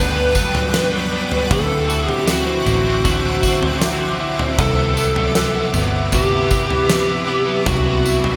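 An overdriven slide guitar carries the melody in this ethereal, blissful dream pop excerpt, its fingered, warm tone colored by analog chorus and delay. Beneath it, a huge arena drum kit enters at 0.3 s, up front with a punchy kick, fat snare, tambourine and toms, all bathed in gated reverb. A double-tracked overdriven electric guitar, treated with harmonic tremolo and analog chorus, and a clean, scooped electric guitar picking arpeggios through lush chorus and delay sit in the background. Higher up, a shimmering ambient pad with an octave-up shimmer, slow attack and long release holds bright, granular sustained chords through chorus, phaser and its own reverb, while a dark, round, foam-muted picked bass anchors the low end. The chords move from Gmaj7 to D9 and settle on Cmaj9#11, and the bright 1980s-style digital production places everything in a lush hall reverb.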